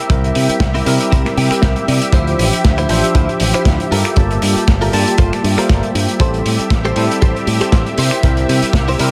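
A lush, detuned unison pad with chorus, phaser and sidechain pumping opens this sleek, sensual nu-disco excerpt at 118 BPM in G dorian alongside a bright, compressed clean electric guitar riff with analog chorus and dub echo, which plays a fill from 1.1 to 2.1 seconds, while a bell-like tine electric piano with pumping and echo, a picked electric bass with an envelope filter, a gritty, dark breakbeat kit of finger snaps, hi-hat and medium-tuned snare, and a tight, saturated kick drive the swung groove over C7, Dm9, Gm9 and Am7 in an echo-heavy small-room mix.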